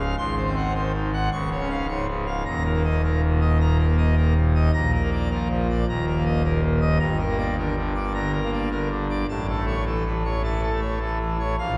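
Drenched in a cathedral reverb with a 6.7-second decay and heard from deep in the room, this jubilant, majestic classical organ toccata excerpt at 105 BPM in 4/4 features a solo pipe organ on full registration, its brilliant mixtures and romantic voicing spanning Db1 to Db6 as the harmony moves from Ab7 through Db, Eb5, Bb and Gm to arrive on A at 9.3 seconds.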